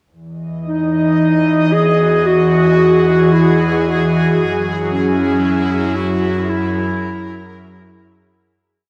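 This short ambient piece drifts at 56 BPM in E lydian, weightless and luminous, as an airy, breathy pad with chorus and shimmer reverb holds slowly shifting chords, moving from Emaj9 to F#9 at 4.4 seconds. A distant, earthy double bass section fades in beneath it with bowed, sustained roots. A mellow solo clarinet, up front with its own shimmer reverb, enters at 0.7 seconds with smooth, motif-based phrases in a classical style, and the dark production sits in a huge, wet reverb as the piece fades out from 4.4 seconds.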